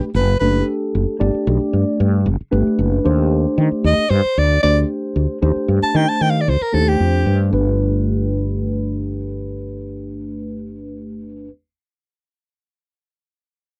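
A dry, close recording in a 1970s studio style with light reverb frames this bright, funky jazz cut, taken from a longer piece, at 114 BPM in a straight 4/4 in G major, moving from Gmaj9 to Ebmaj7 before settling on Gadd9 at 7.5 seconds. A growly, round fretless electric bass sits up front beside a mellow tine electric piano with a phaser, both playing throughout. The soprano saxophone takes the solo, brief at the start and returning from 3.9 to 7.4 seconds with vibrato, scooped notes, a soft attack and a slapback echo.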